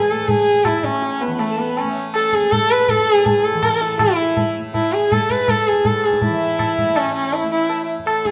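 A smooth, gliding bowed sarangi carries the melody up front, with a light vibrato and sympathetic strings, over a softly plucked, buzzing, shimmering tanpura drone and a reedy harmonium second line breathing in the background. High-tuned tabla with a short ring joins at 0.3 seconds, setting a steady 162 BPM pulse in 4/4 for this meditative, serene Hindustani passage in raga hamsadhwani on A, which moves into a new section at 4.0 seconds. The group plays live together in a stone room with a wet reverb and a softened top end, and the passage is cut from a longer piece.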